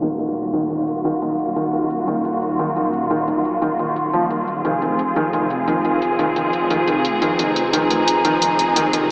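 A straight 4/4 pulse at 175 BPM drives this short cut from a longer dark, technical drum and bass piece in Eb minor, where bright, overdriven electronic hi-hats carry the rhythm with an aggressive, futuristic edge. Underneath, a thick, swirling detuned saw bass sits low between Eb1 and F1, saturated with overdrive and coloured by a phaser. A rich, bowed string section with smooth vibrato holds sustained chords up front, moving from Ebm(add9) to F diminished at 4.6 seconds, while a soft, felt-muted upright piano plays intimate arpeggios with audible action noise, tape echo and a filter sweep running across its low-passed tone. A warbling, nostalgic lo-fi pad with chorus and its own reverb drifts darkly in the background, and a very quiet electronic downlifter falls away by 1.9 seconds. The whole mix is bathed in a lush digital hall reverb, low-pass filtered down to a small-speaker sound, with a filter sweep shaping it throughout.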